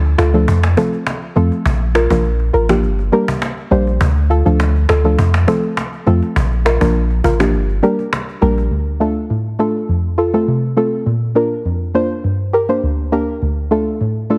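Heavily compressed with a radio-like squeeze and light small-room reverb, this bouncy, sunny dancehall fragment pairs a deep, punchy sub bass with a pitch-drop attack and a woody, vintage-sounding cajon played with soft hands, under a dark, round, chorused pluck that cycles through F, Bb, Gm and Dm and carries on alone from about 8.7 s until 14.4 s, after the bass and cajon fall away.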